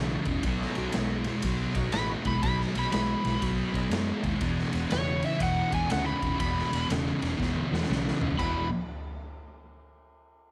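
Blues rock with a southern rock lean, this swaggering, raunchy excerpt struts at 121 BPM in 4/4 with a swung feel, centered on E mixolydian and moving from B7 to E7. A thick, double-tracked fuzz guitar carries the low riff up front, while a dark, round, foam-muted fingered electric bass sits beneath it. A raw garage drum kit enters at 0.3 seconds with a punchy kick, medium-tuned snare, ride, china cymbal and toms, its saturated, gritty sound filling a bright stone room that pumps, and it closes with a fill from 7.4 to 8.4 seconds. At 1.9 seconds an overdriven slide guitar played with fingerpicks takes the high melody, its tone warm. Far in the background, a very quiet tonewheel organ holds full, overdriven chords through a slow rotary speaker with chorus vibrato, and light reverb with small room ambience wraps the mix.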